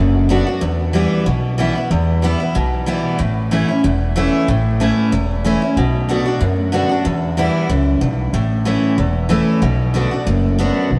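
Bluegrass in a rustic, lonesome mood at a brisk 187 BPM with a light swing, this short excerpt pairs a bright, up-front picked steel-string acoustic guitar, carrying finger squeak and a lush chorus, with a woody, thumpy pizzicato upright bass, both running from 0.0 seconds to about 11.0 seconds over a progression cycling through Bm, Em and A, all bathed in a dreamy cathedral reverb with vinyl crackle.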